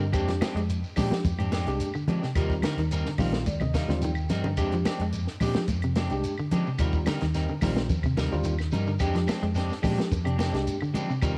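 Recorded at home on cassette with light reverb and small-room ambience, this funky, hypnotic afrobeat groove sets a dark, round fingered electric bass and a dry, punchy compact cocktail drum kit with a high-tuned snare beneath background arpeggios from a clean, fingered electric guitar, scooped stabs from a slightly broken-up picked guitar with lush chorus, and a worn, slightly out-of-tune tine electric piano, lightly overdriven through its built-in speakers, that plays a fill from 2.9 to 4.6 seconds, joined by a drum fill from 3.5 seconds. Damped, high-tuned congas, woody claves and a grainy, distant shekere fill out the percussion.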